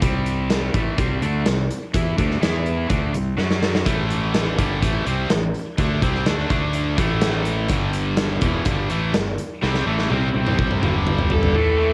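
A home cassette recording with light reverb and a small-room feel carries this aggressive, driving hard rock excerpt at 125 BPM in 4/4, moving through power chords to an Am and a Gadd9. A bright, picked cranked stack guitar and a growly, fuzz-soaked fingered bass play the riff from the start over a huge, up-front arena kit with a punchy kick and a tape-tinged sound, and a second overdriven guitar joins the riff at 3.9 seconds before a long drum fill from 9.6 seconds. At 11.3 seconds a dark, distorted bluesy lead guitar arrives, sitting forward on a single A.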